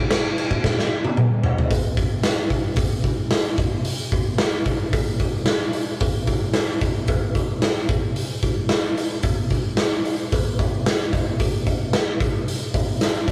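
A straight 4/4 rock beat at 111 BPM drives this short, bittersweet and anthemic cut from a longer piece, played entirely on a raw garage drum kit of kick, snare, hi-hat, toms and crash cymbal. A drum fill runs from 0.6 to 1.7 seconds, where the second section begins and carries on to 13.3 seconds. The kit sits up front with a gritty, saturated edge, a boomy kick, a medium-tuned snare and a rolled-off top, all ringing in a bright stone room that pumps, with light reverb and the rough feel of a rehearsal-room recording.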